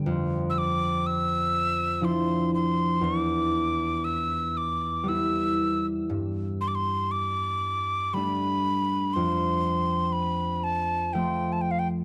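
A fingerpicked, ringing concert harp opens this longing, haunting Celtic slow air excerpt, moving through Dmadd9/F, Em, Gsus2 and F at a rubato 60 BPM in 3/4 and tuned to A4 = 437 Hz, before a breathy, mellow metal mid whistle enters at 0.5 seconds with a high, tongued melody full of vibrato and chiff, both up front in a dry, close 1970s-style studio sound touched with studio reverb.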